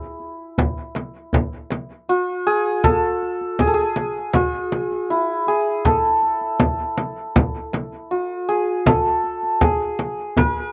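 The santur leads this short excerpt from a longer Persian modal ensemble piece. Its hammered strings shimmer and ring up front with a slapback echo as it carries the melody across a range of E4 to Bb4+45c. The mood is warm and passionate, moving at 80 BPM in a straight 4/4, with the instruments tuned to A4 = 442 Hz. A large, deep frame drum struck with hard hands sits up front from 0.6 seconds, close and dry. Beneath it, a tombak played with soft hands adds a warm, deep pulse from 0.2 seconds, kept in the background. The sound is intimate and dry, recorded outdoors with little reverb, so the santur's ringing tone and the drums' close attack come through clearly.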